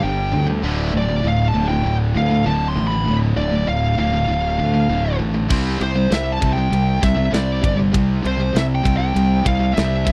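A straight 4/4 pulse drives this epic, relentless heavy metal excerpt, cut from a longer piece. A growly, punchy fuzz bass sits up front from the start. Three picked rhythm guitars, two overdriven and one distorted, stack a bright, low riff above it: two sit in the background, the distorted one double-tracked, and the third is very quiet. Above them a dark, high-gain lead guitar carries the melody. The harmony moves from G5 to D minor, then shifts to C5 at 5.5 seconds, the moment an acoustic metal kit arrives up front with a tight kick, medium-tuned snare, crash and ride cymbals. The sound is dry and close, in the manner of a 1970s studio recording, though the kit itself carries a big-room character.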